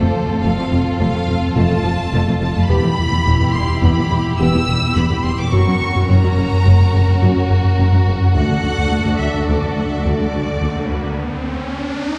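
Vast and futuristic, this hybrid orchestral and electronic film-score passage moves at 106 BPM in 5/4, cut from a longer piece and bathed in a cavernous cathedral reverb. Lush, vibrato-laden violins carry a focused high melody over a second violin line, while woody violas, a very quiet, dark French horn section holding sustained chords, and a mellow sawtooth synth bass riff sit beneath. Smooth cellos and rich double basses, the basses entering at 0.4 seconds, anchor chords of F, Em, F# and D before an electronic riser arrives at 10.0 seconds and runs to the end at 12.2 seconds.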